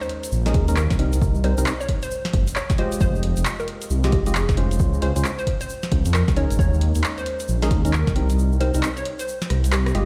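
Heard over a big sound system in a bare stone room yet kept fairly dry, this late-night, bouncy two-step UK garage piece rides a swung groove as a dark, rumbling detuned saw bass pumps up front beneath a punchy, tape-warm electronic kick, analog drum-machine claps, hi-hat, rim click and snare, a grainy egg shaker, organ-like percussive stabs with chorus, dub echo and cassette-tape colour, and a mellow, hollow square-wave pluck melody, before the kick drops out at 8.4 s and a drum fill arrives at 9.5 s.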